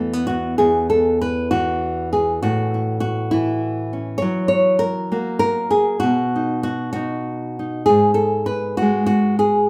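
Set in a moderate large-studio reverb that gives it a roomy, live feel, this nostalgic solo folk fragment, cut from a longer piece, features an up-front, warm nylon-string guitar fingerpicked in a classical manner, drifting rubato in 6/8 at about 65 BPM through Esus2, A, F#7 and B over its brief 9.7 seconds.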